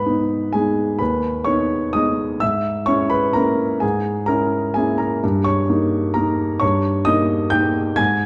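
Classical piano waltz in 3/4 at 129 BPM, elegant and bittersweet, played with rubato and uneven beats by a solo grand piano that sounds intimate, natural and up front, its action noise audible as it spans D#2 to G#6. The harmony moves from G#m to A#m7b5/G# at 2.4 seconds and D#7/G at 5.2 seconds. A dark production sits the instrument in a wet recital hall reverb, and this 8.3-second excerpt is cut from a longer piece.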